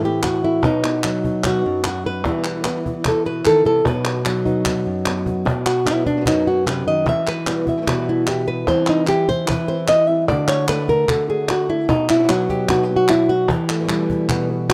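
A fingerpicked flamenco guitar carries the melody up front from the start, its boxy tone marked by finger squeak, while a second, thumb-plucked guitar adds background stabs over snappy, close cajon played with soft hands, and crisp palmas hand claps join at 0.2 seconds. This passionate, dramatic flamenco fragment moves at 149 BPM in 4/4 in B phrygian dominant, with a drum fill at 5.1 seconds leading into a nylon-string guitar solo from 5.5 seconds over chords such as Emadd9, C/E and D. Light reverb colours a rough home demo mix.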